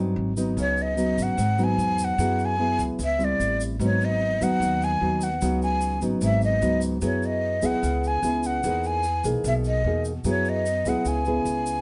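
A softly reverberant, gently rolled-off recording carries this melancholic, intimate bossa nova fragment at 149 BPM, where an up-front, thumb-plucked classical nylon-string guitar and a woody pizzicato upright bass sit under a grainy, bright tube shaker from 0.4 seconds, while a breathy, straight-toned jazz flute with a soft attack enters at 0.6 seconds to sing an expressive melody over suspended ninth and seventh chords.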